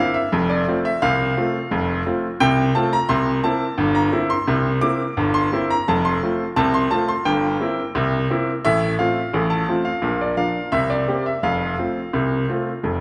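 A straight 2/4 pulse at 86 BPM carries this cheerful, playful ragtime passage in F major, cut from a longer piece, where a solo grand piano, brilliant, open and up front with long sustain, ranges from F1 to D6 over chords moving from F through C7 to Bb and home to F, all set in the wet reverb of a church or concert hall.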